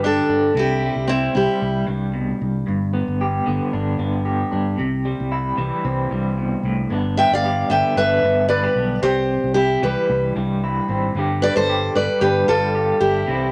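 Moderate studio reverb gives this sunny highlife guitar band excerpt a gentle room glow, with a light swing on the sixteenths. A slightly broken-up, compressed electric guitar through a small old amp carries the accompaniment with tremolo throughout. Beneath it, a round, punchy fingered bass sits dark and direct under the alternating G and C chords, while an up-front picked steel-string acoustic guitar states the melody briefly at the start and returns at 7.2 seconds to carry it through to the cut at 13.5 seconds.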